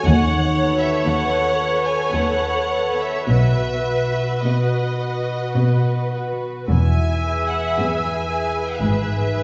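A slow romantic movement for symphony orchestra, warm and tender in mood, moves at 51-60 BPM in a rubato 3/4 and is cut from a longer piece. A clear violin section carries the melody with smooth vibrato, and a second violin section adds a lush inner line beneath it. The violas fill in the accompaniment, and a concert harp rings out fingerpicked arpeggios across a broad span from E2 to F#5. From 0.1 s a rich, expressive cello section with portamento and a double bass section in the background hold down the bass. The harmony moves from B7/D# to B, then to E at 6.7 s and G#m at 8.8 s. The orchestra sounds heard from further back in a wet scoring stage, with a soft, rounded top end.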